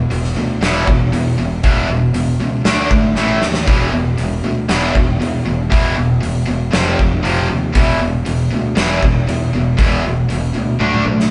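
Menacing and driving, this short hard rock cut from a longer piece moves at 118 BPM in a straight 4/4, tuned slightly below standard pitch. Two bright, picked electric guitars carry the riff together over the whole span, one drenched in high-gain distortion and the other overdriven and placed up front. Beneath them a growly, punchy fingered electric bass sits low, sounding direct and modern. A huge arena drum kit enters at 0.1 seconds with a punchy kick, a medium-tuned snare, hi-hat and toms in a hall-like space, and it stands up front, breaking into fills at 3.2 and 10.8 seconds. The power chords move from E to D and A, back to E, then up to F, down to E again and finally to D, while the band plays live in one room with moderate studio reverb and a slightly dulled top end.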